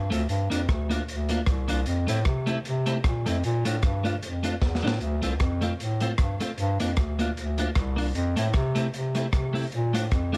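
A soft-attacked bass clarinet opens this driving, mischievous swung ska excerpt, soon joined by a gritty, saturated breakbeat kit of tight kick, snare, rim click and hi-hat, with a drum fill at 4.6 seconds, and a clean picked electric guitar with ensemble chorus outlining Gm7, Fmaj7, Bbmaj7 and Dm7 chords, all within a dark, warm small-room mix carrying lossy compression artefacts.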